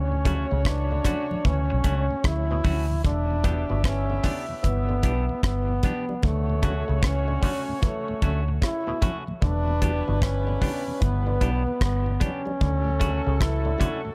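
A roomy, dry-drummed mix carries this hypnotic, serious roots reggae cut at 75 BPM with a swung sixteenth feel, where a clear, vibrato-tinged trombone leads the melody in tape echo over a tight, octave-doubled horn section, a dark, round, punchy, foam-muted bass and tight-kicked acoustic kit up front, a clean hollow-body guitar, a mellow tonewheel organ turning on a slow rotary speaker in the background, a faint, stringy auto-wah clav tracing arpeggios, and very quiet thick-skinned congas, all circling Dmaj7 and Em7.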